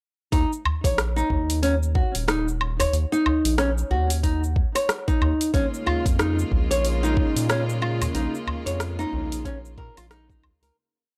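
A soft electronic kick and a layered deep house kit set a loose 92 BPM groove in 4/4, with a 16th-note swing of 59% that gives this short organic downtempo piece a hypnotic, gently rolling feel. The kit's cabasa, dark hi-hat, rim click and low woodblock sit in a small room alongside the kick, while a small acoustic udu adds hand-drum colour just after the start. Up front, a woody nylon-string guitar with old strings fingerpicks a repeating 12-step arpeggio loop that drifts against the bar, its notes trailed by analog delay, while a round, deep analog bass plays a dark, syncopated riff that pumps with sidechain compression. At 5.5 s a rich chamber string section enters on a bowed Bbm7 pad with light vibrato and a smooth top, pumping in the same sidechained way beneath the guitar. The recording is dry and gritty, with transformer saturation lending a hardware edge, and the whole piece fades out from 7.3 s to its close.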